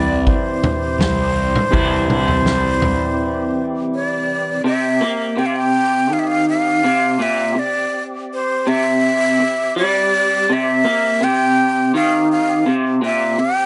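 In a straight 4/4 feel, this trippy, kaleidoscopic psychedelic rock piece sets a breathy, mellow flute melody with analog delay beside a twangy, lo-fi guitar riff with harmonic tremolo, both up front, over fat tonewheel organ chords in the background turning through overdrive, chorus vibrato and a slow rotary speaker. Fuzz bass drives from the start, and a punchy vintage kit with a rolled-off top enters at 0.3 seconds, pumping in a small room; both stop at 3.0 seconds, ahead of a break, all in light reverb.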